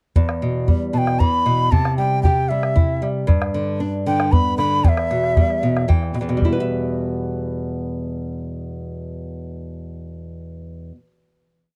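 A fingerpicked nylon-string guitar and a round, close bombo open this brief, wistful yet festive Andean folk piece in a straight 6/8, soon joined by a bright, reedy large quena whose airy, chiffing, vibrato-laden motifs sit up front over bass notes and chords moving from E minor through C and G, before a guitar fill at 5.6 seconds leads into a final chord in a dry, close 1970s-style studio sound.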